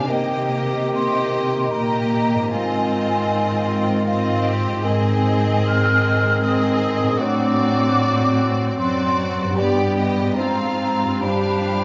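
A serene, slow romantic orchestral passage in 3/4 at 76 BPM, cut from a longer piece, unfolds with rubato as a rich, focused violin section carries the melody over a clear, distant second violin line, an airy flute ensemble with crisp attack, a mellow roomy clarinet and bassoon, a smooth viola section in the background, ringing thumb-plucked harp arpeggios and an up-front cello bass, all moving from Cm7 through Ab and D7/A toward G7 in a moderate scoring-stage reverb with lossy compression artefacts.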